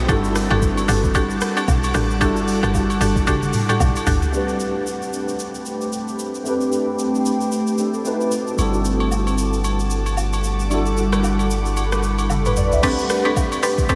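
A worn, slightly out-of-tune tine electric piano and an ethereal, airy pad with chorus, phaser and sidechain pumping open this hypnotic, late-night amapiano fragment at 113 BPM in A dorian, joined at once by a woody, mellow log drum bass that drops out at 4.2 seconds. A bright, round mallet-like synth pluck with delay adds stabs, while a smooth R&B drum kit with soft kick and smooth, tape-warm hats carries a 16th-note swing, backed by close, dry agogo bells and woodblock sitting in the background that return at 8.6 seconds alongside a deep, up-front sub bass with a pitch-drop attack. Drum fills and a long filter sweep mark the turns over chords moving from Em11/G to Am11 and B7b9, all bathed in a huge, dreamy reverb.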